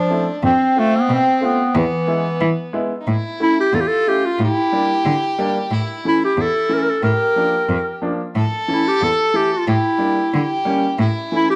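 A straight 2/4 pulse carries this soulful, bittersweet klezmer passage, cut from a longer piece. Up front, a warm clarinet sings the melody as a jazz-inflected solo with light vibrato. A single bowed violin, dark and earthy with a smooth top and light vibrato, traces a second line through a slapback echo. A clear, woody, natural-sounding upright piano accompanies, while one bowed cello, nasal, boxy and even, holds the bass with vibrato, also placed up front. At 3.1 s the music moves into a new section that circles around A, G minor and B-flat chords, all set in a moderate echo-chamber reverb with studio ambience.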